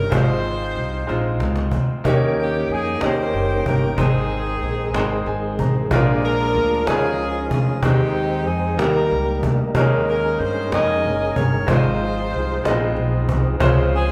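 Soulful and uplifting, this slow gospel excerpt sways in 6/8 at 62 BPM in Ab major, with a clear, tight saxophone section carrying the melody up front over a bright, brilliant grand piano whose action noise and long sustain sit intimately close, plus a woody, growly pizzicato upright bass and a distant cajon struck with soft hands. A cajon fill at 1.1 seconds ushers in a fat, lightly overdriven tonewheel organ at 2.1 seconds, holding sustained chords in the background with key click, chorus vibrato and a slow rotary speaker, while the piano adds a fill at 4.9 seconds. Played live in one large studio room with moderate reverb, the band moves through chords such as Ab6, Eb7, Abmaj7 and Eb9sus4 before arriving at Dbmaj7.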